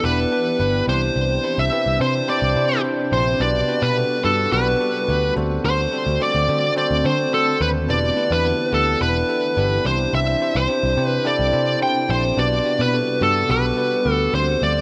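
Light reverb and a digital ambience give this pop recording a polished, airy sheen. At 107 BPM in a straight 4/4, a smooth, warm, overdriven lead guitar sits up front and carries the picked melody between A4 and G5. A bell-like tine electric piano supplies bright, clean accompaniment, while a vintage muted picked electric bass, dark, amped, foam-muted and round, anchors the low end. Far beneath them, a very quiet shimmering pad holds sustained chords with an ethereal, detuned, chorused glow and an octave-up shimmer. The harmony moves through Em7, Cadd9, Gmaj7/B and D7 before circling back, giving this 14.8-second passage, cut from a longer piece, a dramatic yet nostalgic mood as all four parts play throughout.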